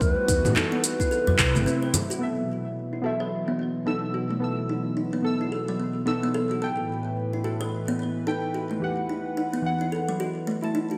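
Organic downtempo with a hypnotic, earthy mood and a swung 16th-note feel, opening briefly with an airy bamboo bass bansuri melody, a round fretless electric bass, a deep layered electronic kick, a small acoustic udu and a tape-toned electronic kit of congas, handclaps, shaker and crisp filtered hi-hats bathed in gated reverb. A detuned sawtooth analog pad holds smooth sustained chords throughout with chorus and sidechain pumping, while an up-front woody kalimba plucks short, delayed arpeggios from 0.3 seconds on. After a break at 1.7 seconds, a dark, nasal chord stab with a sub octave and filter sweep takes over the accompaniment from 2.2 seconds, all set in a lush plate reverb with a bright 1980s-style digital sheen.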